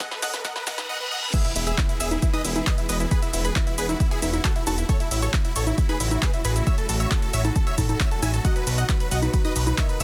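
A dry, overdriven electronic kick and a punchy analog drum machine of snare, handclaps, hi-hat, ride, crash, shaker and congas drive this soaring, euphoric uplifting trance excerpt at 135 BPM in E major, with a short fill, riser and reverse cymbal building to a drop and impact at 1.3 seconds. A huge, bright detuned supersaw lead carries the melody with tape echo and sidechain pumping, alongside a higher, round, chorused analog pluck line and rich, bowed chamber strings holding background chords. A fat, thick sawtooth bass with a moving filter joins up front at 1.6 seconds, and an open baby grand piano with digital delay enters at 8.4 seconds, all in a dense, heavily limited modern master.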